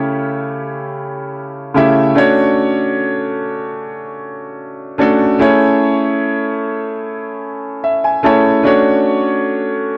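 In a straight, unhurried 4/4, this short excerpt of R&B unfolds at a relaxed pace, cut from a longer piece. A solo grand piano carries everything, its tone warm, natural and placed up front, ranging from C#3 to A5. The harmony drifts from A7/C# into Dmaj7, settles on Amaj7 and returns to Dmaj7, giving the passage a romantic, dreamy glow. A piano fill arrives between 7.4 and 8.6 seconds, just before the final chord change. The sound is dry and gritty, captured with the close ambience of a small room.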